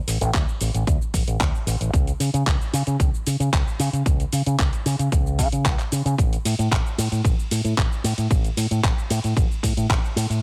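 Sunny and feel-good, this nu-disco excerpt cut from a longer piece moves at 113 BPM in a straight 4/4. A bright, up-front fingered electric bass with an envelope filter carries the groove from A1 to C#3, while a punchy, layered electronic kick sits forward beneath a produced pop kit of handclaps, metallic hi-hats, ride cymbal and shaker, both kick and kit touched with studio reverb. The overall sound is dry and heavily compressed, with a radio-ready density.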